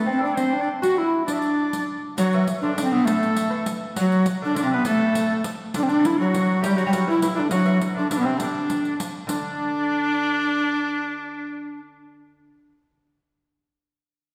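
A bass recorder with an airy tone, chiff and expressive vibrato carries the melody up front, while a clear, distant shawm and a delicate fingerpicked lute with doubled nylon strings weave second lines around it in this rustic, ancient-sounding medieval dance in D mixolydian. Set in a straight 6/8 at 135 BPM (dotted quarters), a close, dry riq adds sparkling jingles from 0.4 s to 9.4 s. A generous church-like reverb surrounds the ensemble, and the lute rings on by itself after the other instruments stop at 11.8 s, as this cut from a longer piece ends.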